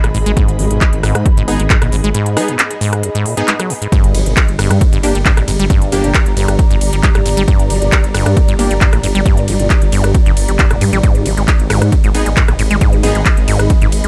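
A dry, close mix carries this hypnotic, driving excerpt of peak-time techno at 135 BPM in 4/4, where a punchy, up-front electronic kick sits under smooth hats, handclaps, ride cymbal and rim clicks, with the hats and ride pumping against the sidechain. A thick, menacing detuned saw bass and a squelchy, resonant acid riff with delay circle between Abm and Gm, while a mellow, ethereal pad drifts high above through chorus and its own reverb. Bright supersaw stabs with 12-bit sampler grit, delay and a filter sweep cut in at 1.5 seconds, pass through a short break at 2.1 seconds, and return near the end at 12.1 seconds.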